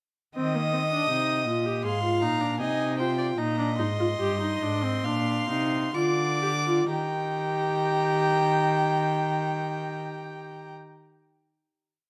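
Classical baroque-style fugue for string quartet in Eb major and 4/4, joyful and elegant at 61-82 BPM, with two violins, viola and up-front cello each bowing one line of imitative counterpoint in a reedy gut-string period style (the second violin adding light vibrato) through an exposition that settles onto a final Eb chord at 6.9 s, slowing down from 0.4 s to 8.9 s in moderate recital hall reverb.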